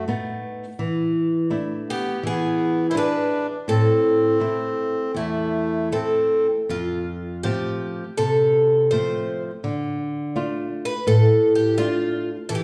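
Passionate and longing, this rubato fado-style ballad, cut from a longer piece, sets a shimmering, octave-doubled picked twelve-string acoustic guitar melody with a woody, boxy tone from old strings up front over fingerpicked flamenco guitar accompaniment with audible finger squeak, while a reedy, clear single-reed accordion with dry tuning adds a second line until 6.5 seconds, all heard from further back in a wet recital hall as the harmony moves from B7 through E7 to Am and then F and Dm.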